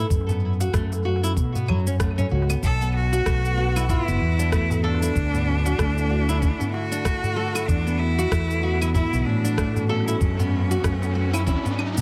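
Earthy and hypnotic, this organic downtempo piece at 95 BPM swings gently in 4/4 as a fingerpicked nylon-string guitar with tape echo and finger squeak arpeggiates over a round, up-front fretless bass with analog chorus. A thumpy, gritty electronic kick, an overdriven layer of shaker, rim click and claves with analog delay, a very quiet, deep darbuka played with soft hands, and a barely audible ringing bronze singing bowl fill out the groove. A biting, nasal cello with vibrato carries the melody from 2.6 seconds, a warbly lo-fi pad with sidechain pumping settles in behind it at 3.2 seconds, and a background riser enters at 9.7 seconds, all within an echo-heavy small-room mix.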